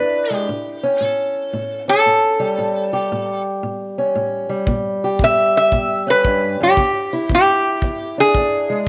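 Soulful and swaggering, this short cut from a longer acoustic country blues piece rolls along with a swung feel in 4/4. A metal-body resonator guitar carries the melody up front, played with a steel bar and fingerpicks, its tone bright, metallic and nasal as it takes a slide solo across the whole clip. Beneath it, a fingerpicked acoustic archtop on old strings gives a dark, woody, boxy accompaniment, also placed up front, moving through A7, A#dim7 and E7. A kick drum played with brushes enters at 4.7 seconds, adding a punchy, airy, polished thump from the studio room. Light studio reverb gives the performance a subtle sense of space.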